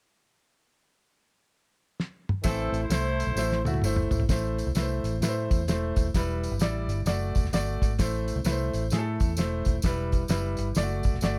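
A small room ambience frames this brief excerpt of uptempo 1960s-style soul, taken from a longer piece and moving at 130 BPM in 4/4 with a swung eighth-note feel in A dorian, its mood urgent and passionate. A cloth-damped, thuddy drum kit enters at 2.0 seconds with a fill, its fat snare, tight kick, hi-hat and toms sounding dry and dark with a rolled-off top, and a second fill arrives around 3.4 seconds. At 2.4 seconds the rest of the band joins. A clear, woody upright piano sits up front with long sustain, and a vintage muted fingered electric bass plays round, foam-muted lines. A jingly, close tambourine adds bright shimmer. A horn section with light vibrato and a smooth top voices a brief second line only between 2.4 and 3.6 seconds, while the harmony settles on Am before cycling through Em and D and back to Am.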